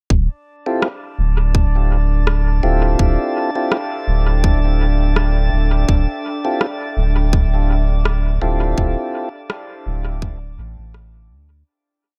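A soft, tight electronic kick and a sparse, echoing rim click set a gently swung groove for this deep, hazy ambient dub piece, with a round sine sub bass up front carrying a dub-style line, a mellow tonewheel organ dropping dark, key-clicking chord stabs through slow rotary speaker and dub echo, a drifting glass-harmonics texture of calm, glassy overtones holding a high note with chorus and reverb, and a warbling, lo-fi tape-like pad fading in behind on slowly shifting chords over Dm11 before the piece fades out from 7.8 seconds.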